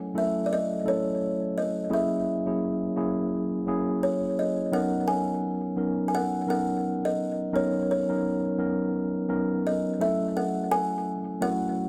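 Warm and romantic, this short soul clip moves at 85 BPM in B major with a gentle 16th-note swing. A buzzing kalimba carries the melody with a woody, hollow-box pluck that rings through an analog delay, while a mellow, clean tine electric piano supplies up-front accompaniment. Light reverb surrounds both parts as the chords pass through A6, F#9 and Bmaj9 before returning to A6 at 10.0 seconds.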